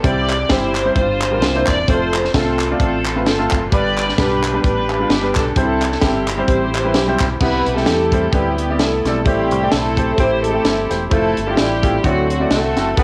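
Reedy, gut-toned strings carry the melody up front with a cassette-tape grain in this jubilant, uplifting uptempo gospel excerpt at 130 BPM, lightly swung in C major, over a clear, intimate baby grand piano with audible action noise, a dark, round, punchy dub bass, and a tight funk kit with a high-tuned snare that shares the tape colour, while hollow group handclaps run from 0.3 to 7.3 seconds and a breathy, whispered tenor saxophone with vibrato enters in the background at 7.4 seconds through its own tape haze, the home cassette recording wrapped in light reverb and studio ambience.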